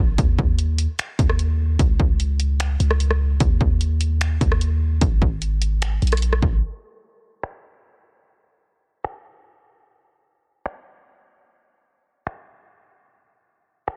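Hazy and melancholic, this atmospheric cloud-rap excerpt sits at 149 BPM in 4/4 with a half-time feel, tuned slightly sharp to A4 = 443 Hz. A deep, boomy 808-style bass with a sine tone and quick, decaying attack sits up front from the start until 6.6 seconds, while a layered electronic techno kit enters at 0.2 seconds with finger snaps, hi-hat, rim click and a punchy kick, roughened by vintage 12-bit sampler grit and soft clipping on the snare. From 6.6 seconds the drums carry on alone under a filter sweep, all in a dry, dense, heavily limited and low-passed master.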